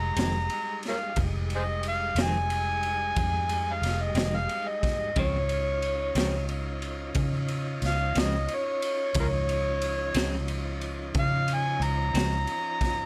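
An overdriven harmonica opens this soulful, mournful slow blues excerpt at 60 BPM in 12/8, taking a gritty, amplified solo full of scooped notes, tongue slaps and light vibrato over a smooth tonewheel organ on a slow rotary speaker and a round, foam-muted electric bass. A twangy, bright clean guitar with tremolo joins at 0.2 seconds alongside a raw, saturated garage kit with punchy kick, medium-tuned snare and dark ride cymbal in a small pumping room. The chords move from Fm7 to Dbmaj7 at 5.2 seconds, all set in light reverb.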